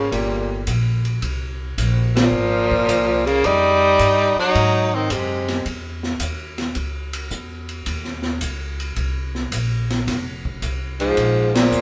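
Recorded live in one stone room with moderate reverb and a dulled top end, this fragment of a longer piece is sophisticated small-group swing and bop in 4/4 with a swung feel. A bright, up-front baritone saxophone carries the melody with light vibrato and scooped notes, while a punchy, forceful tenor saxophone with vibrato plays a second line; both saxophones stop at 5.7 seconds and return at 11.0 seconds. Underneath, a woody pizzicato upright bass on steel strings sits up front, and an open acoustic drum kit with dark cymbals, a high-tuned snare and a boomy kick plays hi-hat, ride, snare and kick, with the whole band striking accents together.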